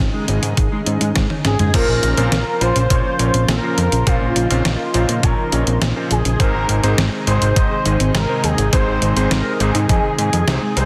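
This moody, driving synthwave excerpt opens on a lush, warbling unison pad holding sustained chords in the background with chorus and sidechain pumping. Beneath it sit a fat, saturated analog bass up front and a very quiet, round pluck tracing arpeggios. A dark, clean electric guitar, fingered and treated with ensemble chorus and delay, plays a brief riff that ends at 1.7 seconds, together with a short drum fill. The detuned 8-bit drum machine, with its medium-tuned snare, hi-hat, toms and crash, and a thumpy electronic kick share a tape-tinged, sampler-style character, as if re-recorded in a small room. From 1.4 seconds an expressive portamento lead sings a smooth melody with vibrato, chorus and delay, and a clear electric grand piano with a clangy low end adds stabs once the music moves into its second part. A moderate hall reverb and a dense, heavily limited modern master give the recording a polished, full sound.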